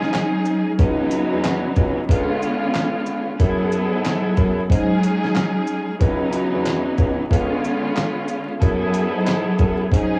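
A rich, bowed string section and a dusty, sampler-style drum kit open this gritty, dark boom-bap hip-hop excerpt together, settling into a swung 92 BPM groove in C# minor. The strings sit up front with expressive vibrato and a soft attack, their tone filtered and softened by cassette tape, while the compressed kit pairs a thumpy kick and fat snare with handclaps, hi-hat and shaker. At 0.8 seconds a bassoon enters as the bass voice, playing in a classical style with light vibrato and a warm, punchy edge. The harmony cycles through jazzy colours, moving from G#7sus4 to C#m11, C#7b9 and F#m11 before the same progression returns to G#7sus4 at 4.7 seconds and repeats. Light reverb, a small-room ambience and vinyl crackle give the whole piece the lo-fi character of a home cassette recording.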